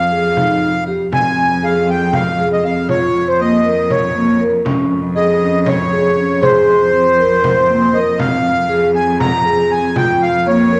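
A reedy, sweet accordion melody sits up front over a veiled, con sordino cello holding a low F, with soft-mallet vibraphone arpeggios ringing in mellow and metallic from 0.1 seconds and a small, bright frame drum sounding distant from 0.4 seconds, giving this urgent, hypnotic chamber excerpt in 7/8 a lingering recital-hall bloom as its minor-key harmony circles around a steady low F.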